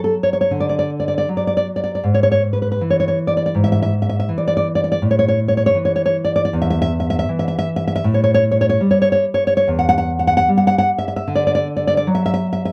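Warm and nostalgic, this short romantic excerpt for solo nylon-string guitar moves in a rubato 4/4 at 64-83 BPM in A major, its dark, full-bodied, thumb-plucked tone sitting up front in a small room with moderate reverb, finger squeak audible as the harmony passes from D through E/G# to A5 and back to D by 11.3 seconds.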